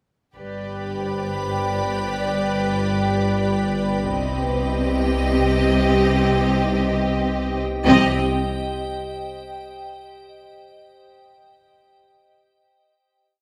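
A cinematic suspense cue in free time, this short, complete piece carries an ominous, eerie mood from its first bowed strings at 0.4 seconds. Two violin sections hold sustained chords with vibrato: one, focused and lush, carries the melody, while a more distant section holds a second line. A smooth symphonic viola section adds accompaniment, and a cello section holds the sustained bass in the background, doubled by a distant bowed double bass section. At 1.0 seconds an icy, crystalline glass pad enters with bright, airy sustained chords, treated with chorus and its own reverb. Sparse single notes from a dark, ringing vibraphone drift in the background, and an evolving analog drone built from sawtooth and pulse waves arrives at 1.3 seconds to hold low notes under the ensemble. The harmony moves from G to C minor before a final chord rings out, bathed in the wet reverb of a scoring stage.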